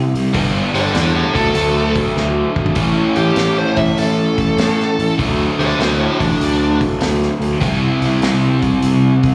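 Caught live through a club PA with light reverb and small-room ambience, this swaggering, driving snippet of blues rock and southern rock rolls at 99 BPM in 4/4 with a swung feel, moving through G, D, A and C. A biting, double-tracked overdriven guitar riff sits up front beside a growly fuzz bass, while a vintage acoustic kit with a punchy kick and rolled-off top plays a fill at 2.2 seconds. From 0.7 to 6.8 seconds a smooth, dark lead guitar carries the melody, its plate reverb and slapback echo set against the riff guitar's spring reverb.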